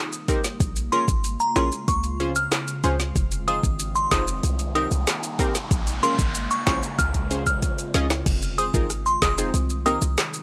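A straight 94 BPM dancehall groove in F minor drives this sultry, tough excerpt, where an up-front electronic afro-pop kit with deep kick, woody snare and metallic hats joins bright, close maracas and timbales, a tight sine 808-style bass, punchy sawtooth chord stabs with a filter sweep, a crystalline, warbling synth bell melody with tremolo and tape echo, and a dark, ethereal FM pad pumping under phaser and reverb. A noise sweep runs from 3.8 to 8.3 seconds, joined by a drum fill from 7.0 seconds that leads into a closing section, all set in a dry, gritty digital ambience.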